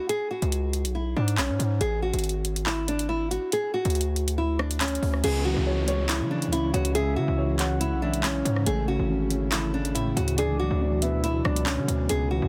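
A distorted 808-style bass dominates this cold, ominous drill excerpt, its saturated, noise-layered sine tone hitting heavy and up front from 0.4 seconds. Over it, a bright, fingerpicked nylon-string guitar carries the melody with tape echo, set against an electronic drill kit of metallic hi-hats, handclaps, rim clicks and crash cymbal at 140 BPM in a half-time feel, rooted in C# phrygian. At 5.2 seconds a dark, boxy grand piano enters with accompaniment as a downlifter sweeps through the background. An ethereal, airy pad follows with slow-blooming sustained chords soaked in ensemble chorus and its own reverb, and a soft octave-layered synth lead adds a round, full-bodied second line with vibrato, chorus, phaser and tape echo, sitting far back in the mix. The sound is dry, dense and heavily limited in a modern master, and the clip is cut from a longer piece.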